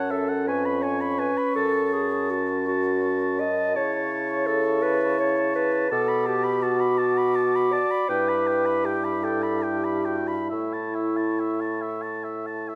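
An airy, hollow concert flute carries the melody in this lyrical classical slow movement for wind quintet, played with straight tone and tongued notes that are heard up close and in fine detail. The oboe sings a second line just beneath it with expressive vibrato, while a mellow clarinet and a smooth-topped French horn fill in the accompaniment, and a bassoon with light vibrato supplies the bass from a more distant, roomy position. All five instruments play together throughout the roughly 12.8-second passage, which is cut from a longer piece. The gently rocking 6/8 metre is shaped with flexible rubato, and the harmony moves through rich chords such as F#m, Bm7 and Em7/G before settling on A. A moderate recital hall reverb of 1.5 seconds wraps the ensemble in a soft, warm glow.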